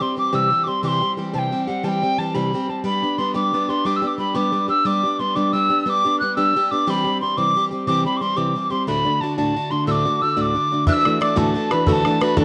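A mellow tin whistle with soft-attack vibrato sings up front over warmly picked steel-string acoustic guitar with audible finger squeak in this bright, cheerful Celtic slide in 12/8 at 120 BPM in D mixolydian, moving through C, G and D before a woody, dry folk marimba, a double-strung bowl-back mandolin in the background and a tight, damped bodhran join at 10.9 seconds on a Dadd9 chord, all set in a wet spring reverb, in a short excerpt cut from a longer piece.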